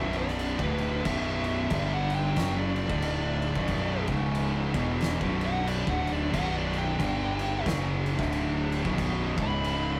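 Sludgy and brooding, this 10-second cut from a longer stoner and doom metal piece swings at 91 BPM in B minor, where a compressed fuzz lead guitar solos between B4 and B5 over a background of double-tracked, bright cranked stack guitar, two picked thick fuzz guitar riffs (one very quiet), a round, punchy fuzz-fingered bass and an oversized low-tuned drum kit with a fat snare, punchy kick and dark cymbals in a pumping stone room, all moving through chords from Bm to G5, D5 and C#5 in a rough, saturated rehearsal-room sound with moderate reverb.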